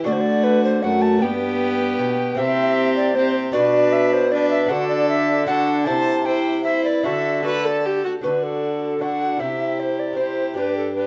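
A festive, courtly renaissance-style consort dance in triple time opens with a delicate, fingerpicked gut-string lute, a rich bowed violin on the second line, an up-front viola and a distant, roomy bassoon holding the bass. At 0.1 seconds a mellow, airy tenor recorder takes the melody with crisp, chiffy attacks and expressive vibrato, while the violin and viola share a reedy, period-style gut tone and the lute's double strings include some octave-doubled courses. A dark, warm production sets the ensemble in a wet stone room, and this clip from a longer piece moves into a new section at 8.2 seconds.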